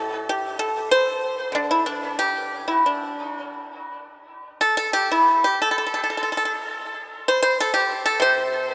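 Soaked in a lush hall reverb with a dreamy haze, this short fragment cut from a longer Chinese traditional piece features a solo pipa, bright, percussive, played with fingerpicks and sitting up front with a dry attack under a diffuse ambient delay, flowing elegantly in rubato 4/4 at 84-95 BPM through the D shang mode, ranging from A2 to C5 and tuned to A4 = 438 Hz, over its 8.7 seconds.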